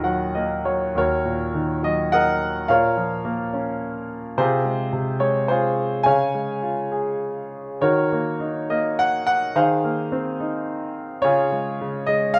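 A clear, open concert grand piano, up front with deep bass and ranging from Eb2 to Ab5, carries this cool, moody classical solo in Eb dorian, moving in a rubato 3/4 at 106 BPM from a brief opening fill through chords from Ebm to Db in a moderate recital-hall reverb, cut from a longer piece.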